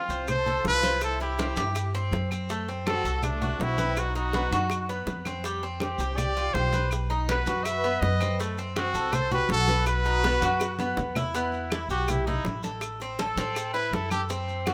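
Cuban son and guajira drive this warm, danceable cut from a longer piece, moving at a straight 163 BPM in 4/4. Up front, a bright, punchy trumpet carries the melody with vibrato and scooped notes, while a picked Cuban tres spins metallic, double-strung arpeggios and a pizzicato upright bass thumps out a dark, gut-string bass line. Behind them, a lush, distant violin section plays a bowed second line with soft attacks and expressive portamento until it drops out at 10.9 seconds. Damped, vintage-sounding congas struck with hard hands join tight, high-tuned bongos, woody claves and grainy, compressed maracas, the latter three sitting in the background, all in a room of light reverb. A drum fill leads into the closing passage at 11.3 seconds, where the harmony settles into E harmonic minor, moving from Em to Am as the trumpet takes a solo.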